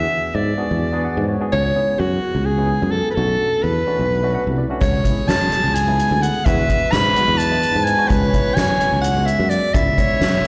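Progressive instrumental band music in a driving 7/8 at 255 BPM in eighths, brooding in mood, heard live through a venue's PA with recital hall reverb in this short cut from a longer piece. A breathy, vibrato-laden soprano saxophone carries the melody up front with slapback echo and digital delay, over a barky, lightly overdriven tine electric piano with fast tremolo that adds fills, and a growly, sustaining fretless bass, as chords move among E7, C#m7 and Bm7. At 4.8 seconds a bright, classical-style alto saxophone enters with a second line, joined by a soft-mallet drum kit with a boomy kick and a very quiet, grainy tube shaker.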